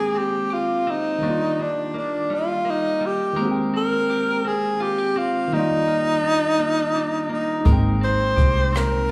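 A slow, straight six-eight pulse at 56 BPM carries this tender R&B fragment in Eb major, cut from a longer piece, with chords swaying between Abmaj9 and Ebmaj7. A breathy, whispered tenor saxophone sits up front with mellow vibrato and a soft attack, while a dark, compressed, picked clean electric guitar adds a second line and a worn, slightly out-of-tune tine electric piano supplies accompaniment through its built-in speakers. At 7.7 seconds a round, foam-muted vintage fingered bass and a jazz brush kit with a boomy kick, hi-hat and rim click join in, all bathed in the wet reverb of a recital hall.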